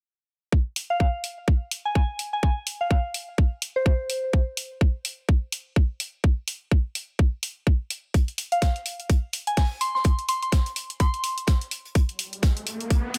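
Swaggering and aggressive, this bass house excerpt at 126 BPM with a 16th-note swing sets a tight, up-front electronic kick and tape-warm hi-hat against a soft, pure FM synth bell carrying the melody with chorus and vintage 12-bit sampler grit, while an open jazz kit with a high-tuned snare joins in the background at 8.1 seconds and an electronic riser arrives at 12.3 seconds, all in a small room ambience.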